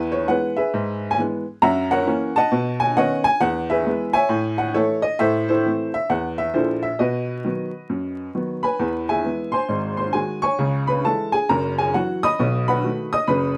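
Stride piano jazz, playful and exuberant, played by a lone upright piano with a swinging 4/4 lilt through this fragment cut from a longer piece. The piano sits up front with a woody, boxy tone and short sustain, ranging from deep bass notes to bright upper figures. The close, detailed sound carries light reverb and a layer of vinyl crackle, and a new section begins at 8.8 seconds, moving through G#7 and C#m before closing on B7.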